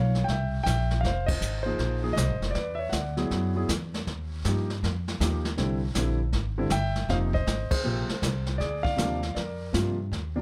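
Playful and relaxed, this swinging jazz piano trio clip has an intimate, smooth concert grand with deep bass and audible action noise carrying the melody over a woody pizzicato upright bass and a brushed drum kit with dark cymbals and a boomy kick, all captured close and dry, with the band hitting accents together at 1.2 and 7.7 seconds.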